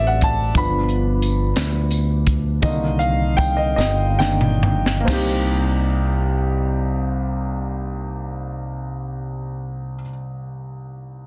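A dense, heavily limited modern master with light studio reverb frames this soulful, fervent slow gospel excerpt in C minor, moving in a straight 6/8 at 44-60 dotted-quarter beats per minute. Up front, a dark, mellow concert grand piano carries the accompaniment from C2 to B5, its intimate, vintage tone marked by audible action noise and deep bass. The piano takes a solo through the opening 5.1 seconds while the tempo slows from 0.6 seconds onward, over harmony moving from D7 to G7 and settling on Cm7. A fingered electric bass sits close and direct with a growly, punchy edge. A crisp fusion drum kit, airy and polished with a high-tuned snare and punchy kick, works across crash, hi-hat, snare and toms, rolling into a fill at 3.8 seconds, while a jingly tambourine rings from a distant, large room. The second section begins at 5.1 seconds, with the bass continuing to 10.0 seconds and the piano carrying on a little beyond.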